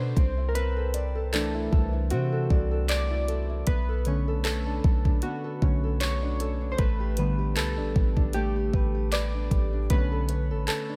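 This moody, longing contemporary R&B excerpt opens with analog keys carrying a solo over a C69 chord, the round pulse-and-sawtooth tone shimmering with chorus and a filter sweep. A fingerpicked nylon-string guitar plays dark, small arpeggios through a delay, with fresh strings and an audible finger squeak. Beneath them, a deep, boomy 808-style bass with a sine body and a noise layer hits with a fast attack and mellow decay, while an electronic drum kit enters at 0.2 seconds with a knocking kick, warm hi-hats and handclaps, sitting up front in a small-room sound. At 77 BPM in B phrygian with a light swing on the sixteenths, the harmony moves through Bm9, A9sus4 and back to Bm9. The whole piece is bathed in digital ambience.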